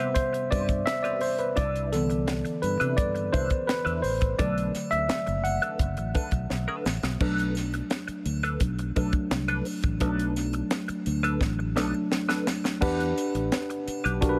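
A worn, slightly out-of-tune electric piano through a combo amp solos up front from the start of this smooth, silky 1970s-style soul excerpt, over a compressed, clean electric guitar riff with wah, a dry, polished funk kit with a high-tuned snare and drum fills at 6.5 and 11.4 seconds, a shimmering triangle in the background, and a round, punchy fingered bass that joins at 0.5 seconds, set in a small room.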